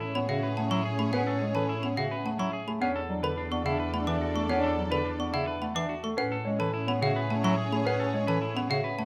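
A straight, propulsive triple-metre pulse drives this bright, minimalist classical pattern excerpt, where a dark, boxy concert grand piano carries the melody over a clear French horn second line with vibrato, smooth bowed studio strings holding chords in the background, a clean hollow-body electric guitar and a woody, dry trough xylophone struck with plastic mallets spinning arpeggios, a focused bowed double bass anchoring the bass, and a mellow, distant bass clarinet joining the accompaniment at 0.2 seconds, all moving from Amaj9 to E9sus4 and back inside a moderate recital-hall reverb captured with close, detailed microphones.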